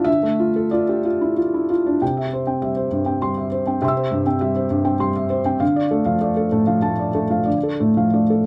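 Melancholic and wistful, this short excerpt of neoclassical minimalist piano drifts in a rubato 3/4 at around 90-102 BPM, with a solo felt-muted upright piano, intimate, boxy and up front with audible action noise, moving from D minor to C at 2.0 seconds and back to D minor at 5.6 seconds, all set in light reverb and a dark production.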